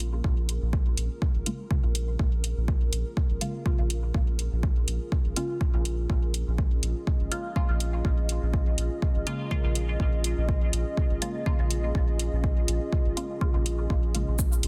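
An up-front, layered electronic kick with a deep, tape-warm punch anchors this nocturnal, meditative dub techno excerpt from 0.2 seconds, beside a round, soft sub bass thickened by tube saturation and sidechain pumping. Muted, full-bodied sawtooth chord stabs with a filter pluck, phaser and dub echo sit beneath a dark, detuned analog pad that breathes through chorus, slow attack and long release, while metallic electronic hi-hats and cabasa ride the swung groove. The sound is dry, dense and heavily limited, resting on one unchanging chord throughout.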